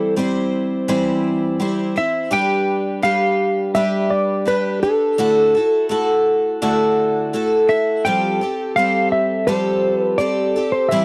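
This rock piece moves at an unhurried 84 BPM in a straight 4/4, with a jangly, nostalgic mood throughout its 11 seconds, cut from a longer work. A picked twelve-string acoustic guitar carries the accompaniment, its bright, shimmering, octave-doubled tone sitting up front from start to finish. Over it, a clean lap steel guitar plays the melody in a dark, compressed slide voice, also placed close and forward in the mix. The harmony moves through C/E, G, Dadd9 and Fadd9, with the last chord arriving at 8.0 seconds. The sound is that of a dry, close 1970s-style studio recording with a touch of light reverb, tuned slightly under standard pitch at A4 = 439 Hz.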